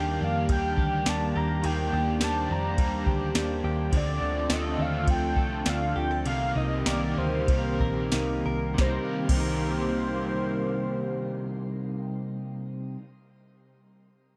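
A soft vintage rhythm box with a deep kick, crisp snare, tambourine and cymbals plays a straight 4/4 from 0.5 to 9.5 s, slowing from 3.9 s, beneath this haunting, hazy dream pop excerpt, where a round, foam-muted picked bass, a hollow, flute-like pad, background clean guitar arpeggios with slapback echo and a bright, overdriven semi-hollow guitar with harmonic tremolo and shimmer reverb carry a velvety, detuned synth lead melody with vibrato through a dark small-room production.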